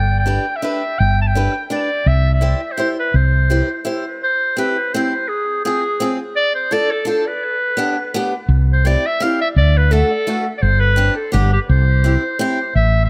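A lilting waltz pulse in 3/4 moves at 168 BPM with a gentle swing on the eighth notes, giving this festive, bouncy alpine folk dance-band piece its lively step in C major. A bright, vintage-toned clarinet carries the melody up front in a classical style, ringing out with an analog delay. Beneath it, a round, hollow-bodied fretless electric bass with an amped, dark character sits prominently, dropping out at 3.6 seconds and returning at 8.5 seconds. A picked, ladder-braced acoustic guitar on old strings adds a boxy, woody accompaniment lower in the mix. After an opening section, a second section begins at 4.2 seconds, with the harmony passing through F minor and D minor before a suspended G settles onto G and then C. Light small-room reverb gives the whole an echo-heavy sound, in a passage cut from a longer performance.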